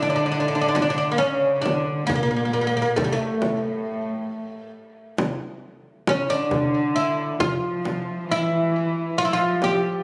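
Arabic maqam ensemble music in A maqam hijaz, hypnotic and longing, moving at 136 BPM in eighths in a straight 10/8, where a bright, woody, fretless oud with plectrum-plucked double strings carries the melody up front through a tape echo, a dark chamber cello section with gut-string tone, light vibrato and a reedy, smooth top bows a period-style second line beneath it, and a deep, large frame drum played with hard hands sounds close and dry from 0.8 s, all heard through a moderate recital-hall reverb in a phone recording from the room, cut from a longer piece.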